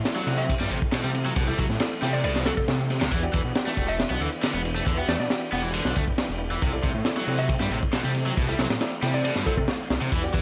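A straight 137 BPM breakbeat groove drives this raw, funky excerpt: a crunchy drum kit with a punchy kick, dark cymbals and a high-tuned snare sits up front over a thick, menacing detuned saw bass, joined by a bright overdriven guitar riff, warm grand piano stabs in the background, very quiet sustained tonewheel organ chords on a fast rotary speaker, and a woody, mellow synth pluck melody colored by chorus, AM radio and cassette tape effects, moving between C6 and Em7 in a dry, gritty small room with vinyl crackle.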